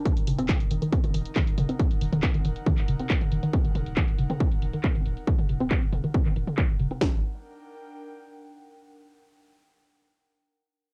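A straight 4/4 pulse at 138 BPM drives this hypnotic, relentless peak-time techno excerpt, where an up-front techno kit with a heavy kick and cracking snare sits over a tape-warm analog drum machine of handclaps, hi-hats and toms, a very quiet saturated sine sub bass holds the bottom, a dark, woody wave-folded pluck riff with tape echo and ensemble chorus pumps against the sidechain, and an airy, breathy detuned pad fades beneath the lightly reverberant cassette home recording before carrying on alone from 7.2 s to 8.7 s as the harmony moves from Ebm to Gm.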